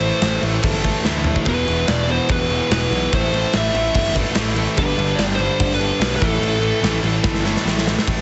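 Dry, heavily compressed and radio-style with its highs capped at 8.0 kHz, this driving, heavy hard rock passage at 145 BPM in A dorian rides an up-front gated 80s drum kit with punchy kick, bright cymbals and fills at 1.1 and 7.2 seconds, a round, dark picked bass, and three overdriven riffing guitars (one crunchy and one sharper in the background, one sludgy, double-tracked and very quiet), under a faint percussive tonewheel organ with key click and slow rotary speaker, while a biting lead guitar with overdrive and tape echo carries the melody until 7.0 seconds.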